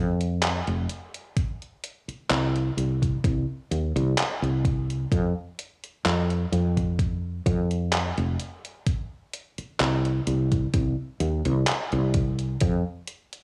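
A woody fretless electric bass opens this nostalgic, melancholic vaporwave fragment, dark, growly and round, with a hollow-body punch and a touch of tube saturation that sits up front in the mix. At 0.2 seconds a detuned 8-bit digital drum machine joins with handclaps and hi-hat, its sampler-style hits overdriven and caught in a gated reverb, as if re-recorded in a small room. An electronic kick drum arrives at 1.4 seconds, thumpy and overdriven, adding weight to the lo-fi percussion in a straight, unhurried pulse. The sound is dry and close overall, with a cassette-tape grain and a light studio reverb lending a faded, wistful haze to this short piece cut from a longer work.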